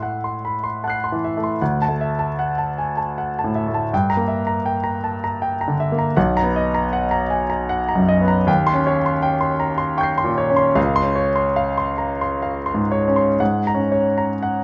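Dreamy and serene, this brief excerpt of impressionist solo piano drifts in 3/4 with a rubato feel, its pulse wandering between 58 and 83 BPM and tuned slightly low at A4 = 439 Hz. A clear concert grand sits intimate and up front, spanning Cb2 to C7 with deep bass, long sustain, a polished tone and audible action noise, its harmonies gliding from Am6 through colors like Cbmaj7 and Eb6 before settling on Ab9sus4 at 13.4 seconds. A moderate stone room reverb lends the instrument a gentle halo across its 14.6 seconds.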